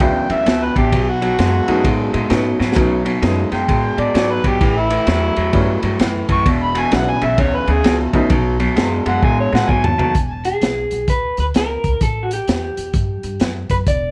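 Electric blues shuffle at 130 BPM in 4/4 with a swung feel, laid-back and swaggering, in E mixolydian and cut from a longer piece. An overdriven, amplified harmonica takes a solo from the start to 10.2 seconds, gritty with light vibrato, tongue slaps and scooped notes in a jazz style, carrying a digital delay. Beneath it, a clear, slightly detuned upright piano with short sustain plays accompaniment until 8.3 seconds, while an electric guitar through a small old amp, slightly broken-up and lo-fi, picks a low riff up front. A woody, thumpy pizzicato upright bass and a crunchy breakbeat kit with dark cymbals, a high-tuned snare and a tight kick hold the groove throughout, the drums saturated with a rolled-off top and adding fills at 2.5 seconds and again before the harmonica drops out. From 10.5 seconds a second picked guitar through the same small amp, compressed and carrying a digital delay, takes the melody over E7 and A5 chords, all set in light reverb.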